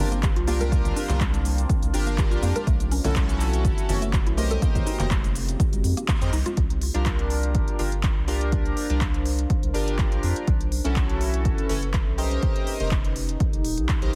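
Deep house at 123 BPM in C dorian, smooth and moody, with a light 16th-note swing. A punchy, layered electronic kick and a drum kit of handclaps, smooth hi-hats and shaker drive a round, deep analog bass, while glossy, retro chorused polysynth stabs with tape echo ride sidechain pumping over sus chords. A detuned, wave-folded dark ambient pad, soft ringing congas and a woody, mallet-like FM pluck arpeggio sit in the background until about 6.6 seconds. A warbling, nostalgic lo-fi tape-like pad then enters at 8.0 seconds, all wrapped in a heavily compressed, radio-like sound.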